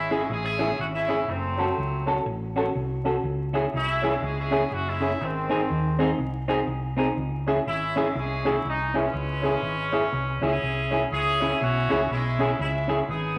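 Ska at 122 BPM in 4/4 with a swung eighth-note feel, this driving, energetic passage in C# harmonic minor is cut from a longer piece. A bright, punchy horn section carries the melody up front, tight and vintage in a pop style. Underneath, a hollow-body short-scale electric bass, played with the fingers, sits round and dark and close to the listener. A clean semi-hollow electric guitar with spring reverb and a worn, woody upright piano that is slightly detuned fill in the accompaniment, the piano playing stabs, both entering at 0.1 s and stopping at 13.0 s. The chords move from C#m through F#m and back, then to G# before returning to C#m, with a new section arriving at 11.1 s. A wet studio reverb and a layer of vinyl crackle give the recording an aged character.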